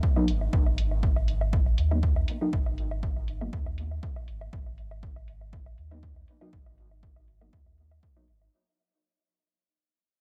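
The recording has a dark, warm production steeped in digital ambience, and this short passage is cut from a longer dub techno piece with a hypnotic, meditative mood in 4/4 with a slight swing on the sixteenths. A punchy analog kick drum, re-recorded in a small room, sits up front from the first moment, joined almost at once by a soft, mellow chord stab built on a G#m7 chord that carries chorus, phaser, sidechain pumping and dub echo, its tone evolving under a filter sweep that runs across the whole passage. A pure sine sub bass follows a moment later, deep, clean and smooth, with a fast attack and sustained notes that pump against the sidechain. An electronic hi-hat, dulled by low-pass filtering, and a quiet analog woodblock trailing dub echo fill in the percussion. The passage fades out over its full length of 8.5 seconds.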